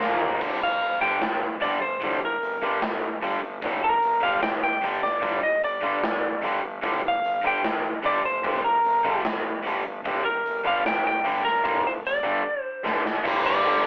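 A drum fill on a big rock kit, with its punchy kick and bright cymbals, opens this aggressive, menacing hard rock passage in G minor at 150 BPM, joined by a faint, lush pad that returns only at the very end around 13.3 seconds. Two picked, overdriven electric guitars play the riff on a G5 chord, one up front and the other a cranked stack with spring reverb sitting in the background, while a round, fuzzy fingered bass rumbles underneath. From 0.6 seconds a dark, slightly broken-up, compressed lead guitar carries the melody up front, all heard through a rough rehearsal-room sound with saturation and a thin, telephone-like colour in this cut from a longer piece.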